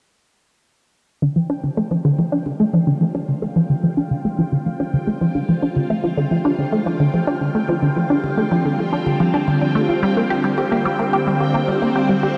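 A straight 4/4 pulse at 109 BPM drives this hypnotic, cosmic piece of sequencer-driven space music in D minor, cut from a longer work and tuned to A4 = 442 Hz. Up front, a resonant blip pluck plays a juicy, squelchy riff with a fast attack and short decay, its detuned sawtooth tone shaped by a moving notch and colored with chorus, phaser and delay, while a filter sweep runs across it from 1.2 to 12.4 seconds. Alongside it, a phased string machine holds swirling, vintage sustained chords with a soft attack and long release, fading in through its ensemble chorus and phaser. High above, a bubbling stepped-filter texture sits on a single G5, its random filter steps and built-in reverb fading in more faintly. The chords move from Dm7 to Gm7 at 10.0 seconds, and the whole dreamy mix is soaked in a huge reverb with a long 8.1-second tail.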